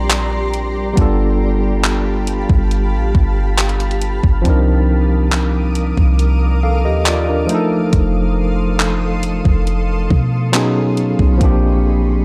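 A barky, up-front tine electric piano lays down the accompaniment for this late-night, longing slice of contemporary R&B at 69 BPM in C dorian, moving through chords like Bb69, G9, Cm11 and F7. Beneath it, a deep, boomy 808-style bass with a fast, decaying attack and a crisp 8-bit drum machine with a thumpy kick, hi-hat and handclaps sit forward, the drums tape-tinged and re-recorded in a large room, entering at 0.1 s and stopping at 11.6 s. A cloudy, evolving granular pad holds sustained chords higher up with slow attack, long release and its own reverb, all wrapped in dark digital ambience.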